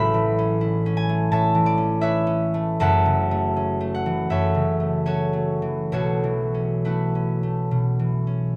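A concert harp carries this brief classical solo from 0.0 to 8.6 seconds, its fingerpicked strings ringing up front with a warm, acoustic glow. The mood is graceful and peaceful, and the playing moves in a flexible rubato over a 4/4 metre. The harmony drifts from Aadd9 to F#m7 at 2.8 seconds and on to B9sus4 at 5.9 seconds, as the harp spans a register from F#1 up to C#6. Close, detailed microphones capture the instrument within a moderate recital hall reverb that lets each note bloom. Tuned to A4 = 441 Hz, this fragment is cut from a longer piece.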